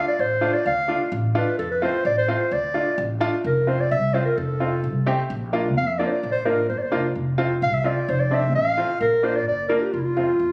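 A phone in a recital hall catches this short cut from a longer klezmer piece, with a moderate reverb of about 1.6 seconds hanging around a close, up-front trio. At 129 BPM in a straight 2/4, the mood is bittersweet and soulful, opening in D minor before shifting to F major at 3.4 seconds. A dark clarinet with a smooth top carries the melody in a classical style, sitting above the rest as the solo voice. A clear upright piano, worn and slightly detuned with a woody tone, supplies the accompaniment. Entering at 0.2 seconds, a pizzicato upright bass on steel strings adds a growly, warm foundation beneath the chords moving between F and Bb in the second half.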